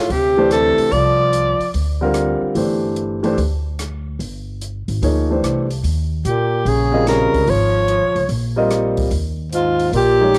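A home cassette recording with a springy small-room reverb frames this hypnotic, spiritual modal jazz excerpt, where breathy, whispered soprano saxophone melody and a lower tenor saxophone line sound together briefly at the opening and return at 6.3 s, both with vibrato and scooped notes, over a woody, thumpy pizzicato upright bass, an airy acoustic drum kit with boomy kick, snare, rim click and hi-hat, and a natural, short-sustained baby grand piano that moves from G9sus4 to Eb9sus4.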